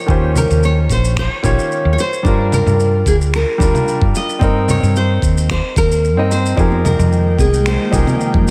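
Warm and relaxed, this short sunset chillout excerpt at 111 BPM in F minor sways with a light 16th-note swing as a full-bodied, fingerpicked nylon-string guitar carries the melody with audible finger squeak over a polished grand piano, both touched with analog delay, while a dark, round fretless bass sits up front beneath a knocking electronic kick and a gritty, compressed shaker, conga and finger-snap kit, with soft-handed background congas entering at 6.7 s and an ethereal, detuned pad with ensemble chorus drifting in at 7.1 s, all moving through Eb13, Gm7, Cm7 and Fm11 in a dreamy, reverb-soaked mix.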